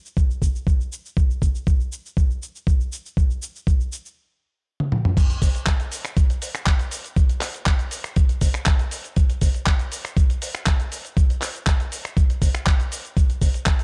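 A straight nu-disco groove drives this short, groovy, cosmic cut from a longer piece, built entirely from drums. A dusty soul sampler-style kit enters at 0.1 seconds with cabasa, hi-hat, handclaps, finger snaps, toms and crash cymbal, gritty and compressed with a tape-softened grain and the ambience of a large room. An electronic kick joins just after, thumpy and up front, sitting well forward of the kit. Around 4.2 seconds the groove stops, a drum fill arrives at 4.8 seconds, and the drop lands at 5.2 seconds, carrying the beat through to the end. The production is dark and warm, with little reverb added.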